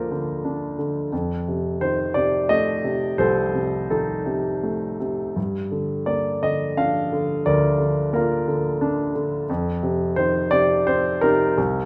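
Cool and brooding, this short excerpt of lyrical classical solo piano moves in an unhurried 3/4 at roughly 80-91 BPM, its rubato phrasing drifting from Gm7 through F7 and back to Gm7 before settling on a bare F5 at 9.5 seconds. A single grand piano, tuned slightly low at A4 = 438 Hz, spans C2 to F5 and sits up front with a warm, short-sustained tone. A moderate recital hall reverb surrounds it across the full 11.9 seconds.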